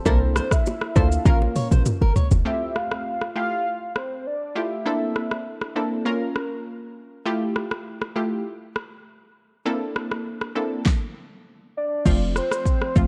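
A punchy, tight 808-style bass sits up front in this joyful, breezy afrobeats excerpt at 100 BPM in F major; its sine tone with a noise layer hits fast and decays, drops out after 2.4 seconds and returns at 12.1 seconds. Alongside it, a layered electronic deep house kit with a deep kick, fat snare, metallic hats and a tape-warm finish drives a straight 4/4 groove of kick, snare, rim clicks, hi-hat, shaker, toms and crash, with a fill early on. An up-front analog pluck plays the accompaniment throughout, its round, warbling, detuned vintage tone carrying chorus and a filter sweep over chords moving through C13, Bbm and Fmaj9. A velvety, smooth synth lead with a sub octave, chorus, tremolo and slapback echo carries the melody in a dark, sustained voice, pausing midway and coming back at 11.8 seconds. In the opening bars a full-bodied, fingerpicked nylon-string guitar adds a short riff with audible finger squeak and slapback echo, while very quiet congas and bongos in a small room sit far in the background, all within a dark digital ambience.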